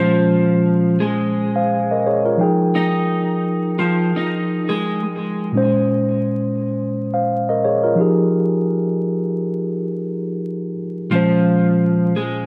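Dark and moody, this hip hop excerpt moves at 86 BPM in Bb minor with a swung sixteenth-note feel, a mellow, clean tine electric piano with a cassette-tape tint carrying the Bbm9 and Fm9 chords up front throughout. A slightly broken-up, picked electric guitar with analog delay plays the melody from 0.0 to 5.0 seconds, then returns at 11.1 seconds. Moderate spring reverb, an echo-heavy mix and vinyl crackle lend the whole a dusty, shadowy atmosphere.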